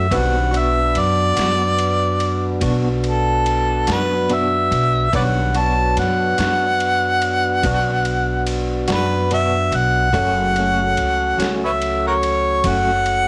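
An overdriven harmonica leads a smoky, mournful slow blues in 12/8 at 48 BPM, soloing up front with vibrato, tongue slaps and scooped notes in a jazz style over a worn baby grand piano with long sustain, a round, dark tonewheel organ with key click and slow rotary speaker, and a woody pizzicato upright bass. A bright, picked electric guitar with tremolo sits in the background beside a gritty, pitched-down sampler-style drum kit with a thumpy kick, high-tuned snare and ride cymbal, overdriven and re-recorded in a large room. The harmony rests on Bm before moving to F#m at 10.1 seconds in this fragment of a longer piece.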